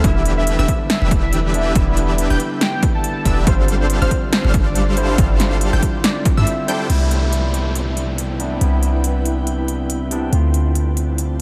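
A half-time future bass groove at 140 BPM with swung 16ths opens this lush, bright C major excerpt in a drop: a punchy overdriven kick sits beneath a big-room kit of crisp hats, punchy snare and crash, a deep, boomy 808-style bass pumps up front, and huge detuned supersaw chords ride alongside a gritty, barky tine electric piano. A velvety lead with chorus, tremolo and tape echo carries the melody from the background, while a very quiet unison pluck adds high arpeggios. At 6.9 s the drop gives way to a downlifter, and from 7.9 s an ethereal, airy pad with phaser and ensemble chorus drifts in over the piano and bass, all soaked in a huge, dreamy reverb.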